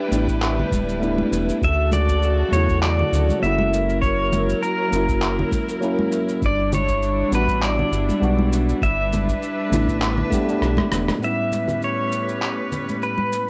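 This cut from a longer sunset chillout piece has the character of a home cassette recording, set in a moderate studio reverb. At 100 BPM in 4/4 with a light swing on the sixteenths, it feels sunny and blissful. Twangy pedal steel guitar carries the melody up front, its slide and volume swells colored by analog delay, while a rich, bowed string section holds smooth sustained chords and a worn, slightly out-of-tune tine electric piano accompanies through a filter sweep and tape echo. Underneath, a round, dark analog bass blending sawtooth, sine and ring modulation sits up front until about 11.1 seconds, alongside a dry, overdriven electronic kick. Gritty, sampler-style shaker, handclaps and rim click play alongside close, bright congas heard in the background. A drum fill at 10.6 seconds and a band accent lead into a closing passage on an A9 chord from 11.2 seconds.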